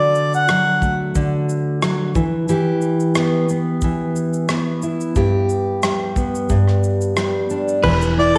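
This tender, reflective acoustic pop excerpt opens at 0.0 seconds with a mellow, distant harmonica phrase carrying the melody up front over a full-bodied fingerpicked steel-string acoustic guitar, and the harmonica falls away by 1.0 seconds before briefly returning near the close. A natural country drum kit with an airy, polished studio-room sound follows almost immediately, adding a punchy kick, rim clicks, shaker and crash cymbal. At a relaxed 90 BPM in 4/4 with a gentle swing on the sixteenths, the piece sits in E minor, moving from D to Em to G. At 7.8 seconds, as the harmony lands on E5, a clean, direct-recorded electric guitar enters with compressed picked arpeggios, joined by a plucky, funky analog bass with a fast attack and decaying filter pluck on a low E. The whole recording is bathed in a wet echo chamber reverb and a small room ambience, giving it an intimate, reflective glow.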